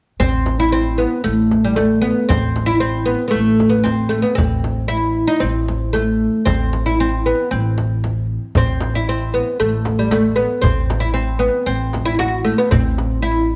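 A fretless, plectrum-plucked oud with double strings carries a melancholic, hypnotic melody up front with a slapback echo, over pizzicato steel-string upright bass and a deep frame drum in the background, before a crisp metal-shell darbuka joins at 8.6 seconds in this dark, lightly reverberant Arabic maqam ensemble passage in A minor at 115 BPM, cut from a longer piece.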